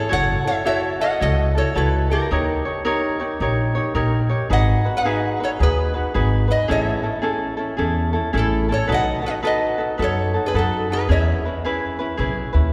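Relaxed and dreamy, this short Hawaiian excerpt drifts along with a gentle swing, as a metallic, nasal lap resonator guitar played with slide and fingerpicks carries the melody over bright fingerpicked ukulele and woody, thumpy pizzicato upright bass on gut strings, all bathed in the long, wet reverb of a church as the chords move from F#m7 through D#7, G#m7, Amaj7 and B7 to settle on E6.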